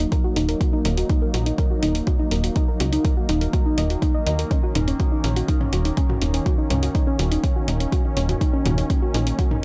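Melodic techno with a melancholic, hypnotic pull, this short excerpt rests on a single minor chord throughout. A tight, punchy sequencer bass drives from the start, its sawtooth-and-square tone edged with ring modulation and tube saturation, while a deep, tape-warmed electronic kick sits up front beside it. A deep house drum kit adds hi-hat and toms, layered and re-recorded in a small room. Above, a soft, round pluck plays arpeggios through chorus and tape echo, its dark, detuned tone shaped by a moving notch, over a smooth analog pad holding sustained chords with chorus and vintage 12-bit sampler grit. From 0.5 seconds a warbling, evolving analog drone hovers in the background, and sidechain pumping breathes through the pad, pluck, bass and drone inside a digital ambience.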